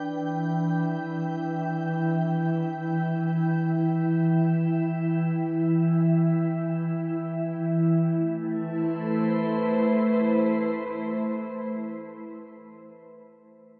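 Unfolding in free time, this ambient piece in A minor drifts with a spacious, reflective mood, and it is cut from a longer piece. A single glassy FM pad carries the whole recording alone from 0.0 to 12.5 seconds, ranging from E3 to G5 with a slow attack, long sustained tones and a lingering release. Its ethereal, warbling character and vintage feel come from the ensemble chorus, built-in reverb and analog delay on the pad, which sits mellow and up front. The harmony rests on E minor before shifting at 8.1 seconds to A minor add9, opening a second section. Tuned to A4 = 439 Hz, the dreamy mix is soaked in a cathedral-like reverb with a 5.2-second decay that lets every chord hang in the air.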